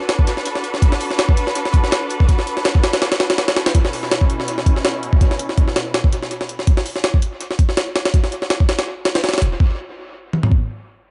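Dark and atmospheric, this short cut from a longer drum and bass and jungle piece moves at 164 BPM in 4/4 with a light swing on the sixteenths, tuned slightly below standard pitch. A muted, con sordino string section holds veiled, lush bowed chords from B2 to B4 with soft attack and vibrato, set distant and shaped by a low-pass filter sweep until about 6.7 seconds, moving from Bm7 to Aadd9/B at 3.7 seconds. Up front, a pitched-up, sampler-style jungle kit drives the track from 0.1 to 10.6 seconds with a thumpy kick, high-tuned snare, hi-hat and toms, its compressed, overdriven grit thrown into dub echo. Beneath it, a very quiet acoustic breakbeat kit adds saturated hi-hat and a medium-tuned snare with a small-room, rolled-off smoothness until 3.7 seconds. The echo-heavy mix sits in light studio reverb with a dull top end. The strings fall away at 6.6 seconds, and from 9.6 seconds the closing section leaves the drums to carry the cut.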